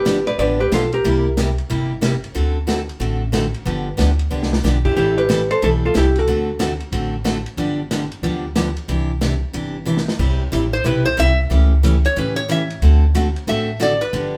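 Country western swing at 183 BPM in C major, playful and down-home, with a clean hollow-body archtop guitar picking brief melody phrases over growly, woody upright bass, a bright dreadnought acoustic guitar and a vintage kit with dark cymbals and drum fills at 4.3 and 9.9 seconds, before a nasal, metallic resonator slide guitar takes a solo from 10.7 seconds, all played live in one room with a wet, short studio reverb.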